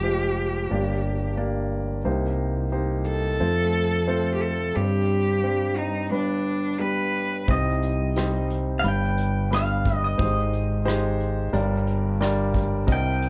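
In a straight 4/4 feel, this intimate, heartbroken acoustic folk-pop ballad opens with a biting, distant bowed cello featured with light vibrato over a woody upright piano, its action noise audible, and a round, mellow fretless bass sitting up front. At 7.5 seconds the cello gives way to a bright, clean pedal steel guitar carrying the melody with fingerpicked slides and volume swells, while a vintage brush kit adds a punchy kick, hi-hat and rim clicks from a small, pumping room. Light reverb softens the dark, warm production of this passage cut from a longer piece.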